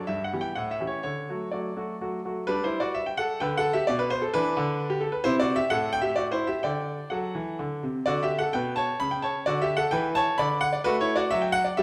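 Graceful and playful, this short excerpt cut from a longer classical-period piano sonatina in G major moves at 130 BPM in a rubato 3/4, with a bright grand piano playing solo from G2 to B5, its brilliant, open tone and short sustain held up front in a wet recital hall reverb as the harmony passes from Em/G through A7 and D before shifting at 2.5 seconds to a second section that wanders through Bmadd11, Am7 and a brief unharmonized moment at 9.0 seconds toward Bm/D and F#m/A.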